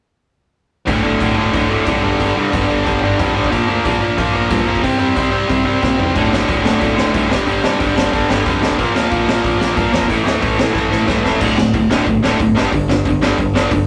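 Punk rock with a raw, urgent push: an up-front, bright overdriven electric guitar and a tight, picked distorted guitar drive a riff over a round, dark fretless bass sitting in the background, while a boomy, gritty garage drum kit with dark cymbals and a pumping small-room sound cracks out fills near 5.8 and 10.7 seconds, all captured in a rough rehearsal-room recording cut from a longer piece.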